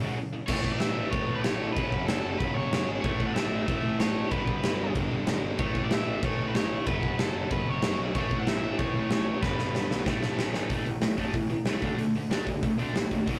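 Punk rock with an upbeat, rowdy mood, cut from a longer piece and captured as a rough rehearsal-room recording with tube saturation and light reverb. A tight, bright, double-tracked distorted guitar riff sits up front beside a big, dark acoustic drum kit with a punchy kick and rolled-off top, while a growly fuzz bass stays in the background and an overdriven, compressed lead guitar carries the melody from 0.5 to 10.0 seconds. After a brief break near the start and a drum fill ending at 10.7 seconds, the song moves into a new section built on power chords.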